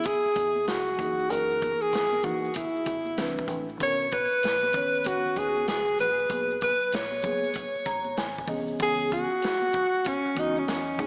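Cool, relaxed jazz-hop cut from a longer piece, swinging at 96 BPM around C#m, where a clear alto saxophone leads up front with light vibrato, soft attacks, scooped notes and tape echo over a vintage kit with a punchy kick and rolled-off top, ringing hard-hand congas and maracas in the background, a round deep dub fingered bass entering at 0.3 seconds, and a mellow tine electric piano with lush chorus arriving at 1.0 seconds and adding a fill at 7.6 seconds, all set in a dreamy, hall-soaked mix with a small-speaker sound.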